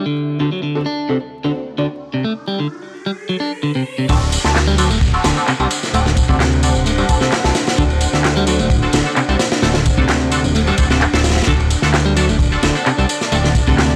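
Funky and swaggering, this breakbeat cut opens with a bright, clean electric guitar riff up front with tape echo, a nasal, band-passed sawtooth chord stab with phaser, ring modulation and chorus, and a moody, detuned analog pad sustaining dark chords in the background with sidechain pumping. A background riser and downlifter enters at 1.6 seconds, the riser building into the drop at 4.1 seconds. There a fat, saturated analog bass and a crunchy, gritty breakbeat kit of tight kick, medium-tuned snare and dark ride arrive up front, layered with a produced house kit of handclaps, ride and tambourine, all in a dry small room with vinyl crackle.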